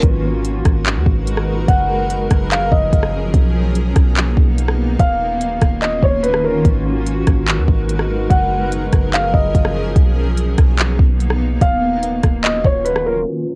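A felt-muted upright piano carries the melody from 1.7 seconds, its soft, intimate tone dulled by a low-pass filter and trailed by analog delay and cassette-tape grain, over a blurred, detuned granular cloud pad that pumps under sidechain and its own built-in reverb. This blissful, floating cloud-rap excerpt moves in a half-time feel, with a deep, round 808-style bass and an up-front smooth R&B drum kit of soft kick, handclaps, rim clicks and silky hi-hats. The chords cycle from G#m7 through F#maj9 and Bmaj7 to D#m7, and the dry, home-taped sound keeps the haze close and hushed.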